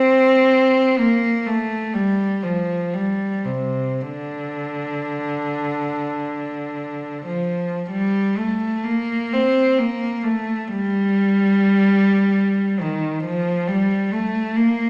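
A single cello carries this brief classical fragment alone, its bowed line sitting intimate and close with a soft attack and an airy, sul tasto tone touched by light vibrato. The mood is lyrical and nostalgic, and the playing moves freely in a rubato six-eight, so the pulse breathes rather than marches. The line stays within the range from C3 to C4, keeping the voice warm. A wet recital hall reverb surrounds the player, lending a gentle halo while the cello itself remains up front. The passage falls into two parts, with a new section arriving at 7.9 seconds before the fragment breaks off at 14.9 seconds, cut from a longer piece.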